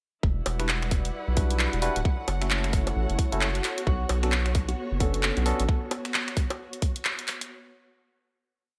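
A tight, layered electronic kick drives this bouncy, soulful two-step garage piece. Up front with it sit a garage kit of skipping swung hats, finger snaps, handclaps and bongos in small-room ambience with gated reverb, and a round, deep dub sub bass playing a syncopated line. A barky tine electric piano fires clean, rootless chord stabs through delay, while a bowed chamber string section with vibrato shifts slowly and pumps under sidechain, a mellow detuned analog pad sits very quiet beneath, and the chords move from Em7 through F#m7 to Bm9. At 3.9 seconds a thumb-plucked nylon-string guitar adds a repeating riff in the background, soaked in lush chorus and delay, inside a bright 1980s-style digital production with light reverb.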